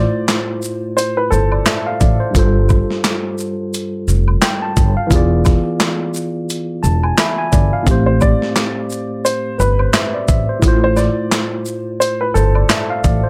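A lightly reverberant recording carries a tough, reflective boom-bap hip-hop groove at 87 BPM with a 16th-note swing, where a gritty, compressed sampler-style drum kit with thumpy kick, snare, hi-hat, shaker and handclaps and a growly pizzicato upright bass sit up front beneath a worn, slightly out-of-tune, lightly overdriven tine electric piano accompanying through G9sus4, E7b9 and Am7 chords, while a woody, slightly detuned upright piano plays a short-sustained, delay-touched melody at the start and again from 8.1 seconds, and close, dry maracas and woodblock sit in the background of this passage cut from a longer piece.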